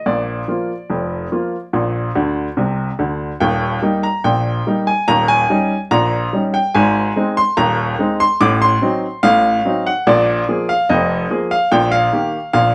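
Set in a straight 2/4 metre, this cheerful, playful ragtime piece is carried entirely by a solo upright piano, clear and woody with a short sustain, sitting up front in a light reverb. The piano spans a broad range from deep bass to bright upper notes, dropping in a brief fill between 2.2 and 3.4 seconds, while the harmony moves through Bb, Eb, Eb7, Ab and a diminished chord before settling on Eb over Bb near 11.7 seconds. The natural-sounding passage is cut from a longer piece and runs about 12.7 seconds.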